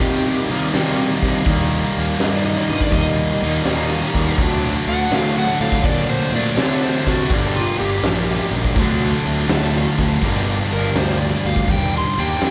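A thick, double-tracked fuzz guitar sits up front with a heavy riff, backed by a fuzzy, amped picked bass and a huge arena drum kit with a fat snare and punchy kick, swinging through a gritty blues rock and southern rock groove over Ebmaj7, D7#9 and Gm. An overdriven slide guitar plays a fingered solo across the whole passage, while a very quiet tonewheel organ holds sustained chords through a slow rotary speaker with key click, adding a brief fill from 8.8 to 10.2 seconds. The band plays live together in a large studio with moderate reverb, in a passage cut from a longer piece.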